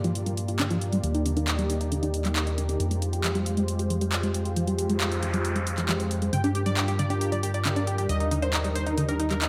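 A tight sequenced synth arpeggio with chorus, phaser, tape echo and a filter sweep opens this euphoric, driving uplifting trance excerpt at 136 BPM in F dorian, over a fat, detuned analog bass and an overdriven house kit of handclaps and bright hi-hats, with a noise sweep from 4.8 to 6.3 seconds, then a punchy, airy supersaw stab melody with digital delay up front from 6.3 seconds, set in a moderate recital hall reverb.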